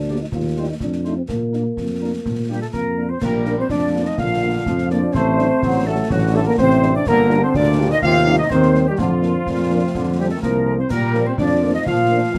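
A mellow solo euphonium carries a prominent second line through this rousing, spirited military-style march for wind band, set in a straight 2/4 at 125 BPM in Bb major. Beneath it, a solo tuba sits up front on the bass, while a dark trumpet section with light vibrato and a smooth top takes the melody in a classical style, and a French horn section fills in accompaniment from the background. Concert snare drum, concert bass drum and clash cymbals with dark-toned cymbals drive the beat from a small room. An airy, close-miked small flute group with crisp attack joins on a second line at 2.5 seconds, and a clear trombone section adds sustained chords from 3.2 seconds. The harmony moves from F7 to Bb, through D7/A and Gm7, and returns to F and Bb in a dark production with light reverb, heard as a cut from a longer piece.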